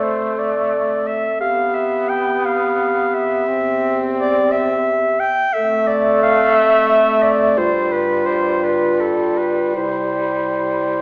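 A mellow, smooth-topped soprano saxophone sings the up-front melody in this tender, rubato classical fragment for single-reed quartet in C major and 12/8 at 50-60 BPM, joined throughout by a distant, roomy clarinet on the second line, a vintage-toned tenor saxophone with vibrato carrying the accompaniment up front, and a dark bass clarinet holding the bass in the background, all set in a reverberant recital hall with a small-speaker sound as the harmony moves from Dm/F through Fmaj7 and G7 to settle on C.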